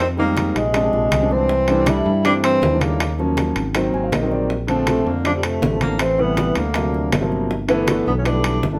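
This is a short, sunny and sophisticated Afro-Cuban jazz excerpt at 160 BPM in a straight 4/4, cut from a longer piece. Up front, a mellow tenor saxophone carries the melody with vibrato and a distant, roomy tone, while a very quiet, breathy trombone plays a second line beneath it with scooped notes. A growly fingered electric bass sits prominently in the mix, and a concert grand piano with deep bass, long sustain, audible action noise and a vintage character supplies the accompaniment, adding a fill from 3.8 to 4.5 seconds. In the background, low-tuned congas ring and high-tuned bongos are played with soft hands, and both are recorded close and dry. Metal-shell timbales join at 0.4 seconds. The band plays live in one room with moderate studio reverb, moving through rich extended harmony from Fm7 to a closing G6.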